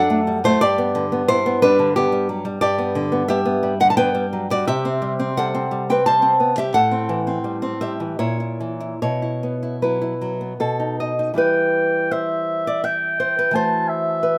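Romantic oboe-and-guitar duo in E minor, solemn and melancholic, moving in a rubato 3/4 between 71 and 91 BPM, where a small, up-front fingerpicked nylon-string guitar with fresh strings and audible finger squeak carries the accompaniment through chords such as G, C, Am7 and a suspended B before a distant, roomy oboe enters at 11.4 s to sing a warm classical solo line over Em, both parts touched with plate reverb in a rough home demo mix cut from a longer piece.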